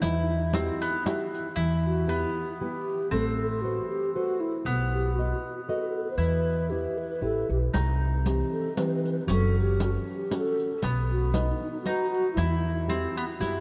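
Steeped in a vast, echoing cathedral reverb, this passionate, romantic Italian folk serenade in E harmonic minor sways in a swung 3/4 at 117 BPM, with a breathy, mellow alto flute singing the tongued, vibrato-laden melody up close through a slapback echo, a round, double-strung picked mandolin carrying a second line, a dark, full-bodied thumb-plucked nylon-string guitar accompanying, a woody pizzicato upright bass sitting up front, and a close, dry riq with dark jingles tapping softly from 0.0 to 1.5 seconds and again from 7.7 seconds onward.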